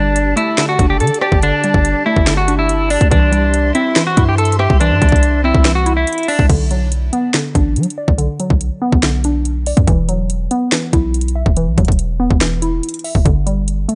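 Menacing and dark, this half-time trap and hip hop excerpt moves at 142 BPM in B phrygian, opening with a twangy, slightly broken-up electric guitar melody carrying tape echo. Beneath it sit veiled, con sordino strings in the background and a hollow, detuned square-wave pluck softened by chorus and a low-pass filter, with the guitar and strings dropping out around 6.5 seconds. A deep, boomy 808 bass and an up-front trap kit, entering at 0.2 seconds with a hard-clipped kick, sharp snare, metallic hi-hats, finger snaps, rim clicks and crash, drive the whole passage in a dry, close mix.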